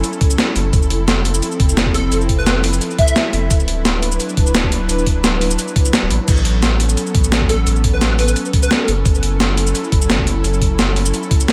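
A lush, uplifting slice of liquid drum and bass at 173 BPM, where a gritty, tape-kissed breakbeat kit sits up front over a thumpy electronic kick and a round, deep sub bass, while an airy, breathy pad with chorus holds sustained chords and a punchy, catchy plucked lead with delay appears at 1.9 and 7.5 seconds, all wrapped in light reverb.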